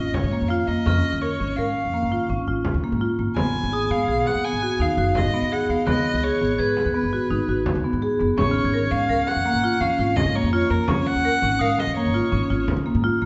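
Heard in a wet recital hall with a rolled-off top end, this urgent, pensive snippet of contemporary chamber music in 7/4 places a rich, vibrato-laden bowed violin melody up front over woody rosewood marimba arpeggios, growly pizzicato upright bass and a deep, saturated frame drum, while a bell-like glockenspiel rings quietly in the background from 0.9 s.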